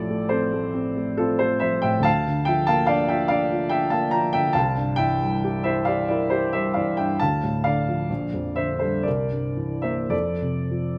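A warm, woody upright piano opens alone on an F major chord, setting a dreamy, nostalgic mood for this short excerpt from a romantic classical nocturne. The tempo drifts between 52 and 73 BPM in 3/4, with free rubato that lets each phrase breathe. The piano ranges from a deep A1 in the bass up to Bb5, its tones carrying a long sustain as the progression moves through B-flat, C, D minor and G minor seventh before reaching a C7 and resolving to F at 10.1 seconds. Close, detailed microphones place the instrument up front, so it is heard clearly, while a moderate recital hall reverb adds a soft halo of space around it.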